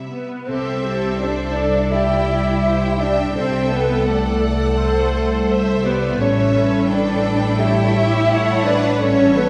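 Moving and uplifting, this cinematic excerpt from a longer piece unfolds at 84 BPM in 4/4 with a rubato feel. A lush, focused violin section carries the melody high in its range, while a second violin line, an airy flute ensemble with lifted highs, and a classical-style clarinet in the background add supporting lines beneath it. A smooth, even viola section fills in the accompaniment, and a concert harp rings out mellow fingerpicked arpeggios across a broad span from A2 to C#6. The bowed cello section sits close and rich in the bass, joined by a double bass section with a soft, rounded top, with the strings' vibrato giving the ensemble a singing quality. The harmony moves from C6 to A7 at 6.2 seconds, and a wet concert hall reverb places the orchestra further back in the room.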